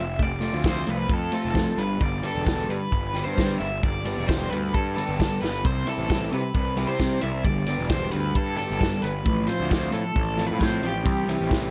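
A straight 4/4 pulse at 132 BPM from a vintage drum kit, with its punchy kick, medium-tuned snare and hi-hat sitting up front in a small, natural room from 0.2 s, drives this jangly, wistful indie rock excerpt in G mixolydian, where a growly, fuzz-soaked picked bass shares the foreground, a dark, clean fingered guitar and a compressed, overdriven guitar thickened by ensemble chorus play riffs, and a bright, overdriven semi-hollow guitar carries the melody through tremolo and plate reverb over chords moving from F to G, C and F/A, all within a light reverb.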